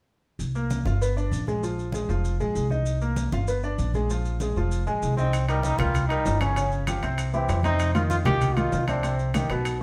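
Captured live in a moderately reverberant stone room, this passionate, driving salsa excerpt in C minor at 194 BPM rides on a woody, thumpy pizzicato upright bass, a bright, polished concert grand piano with deep bass and short sustain, warm, thick-skinned congas, and grainy, vintage maracas, before a brilliant, punchy trombone with light vibrato takes a forceful solo from 4.9 s and ringing metal-shelled timbales join at 5.3 s as the harmony moves through Cm7, Dbmaj7#11/G and F5 toward a closing Cm.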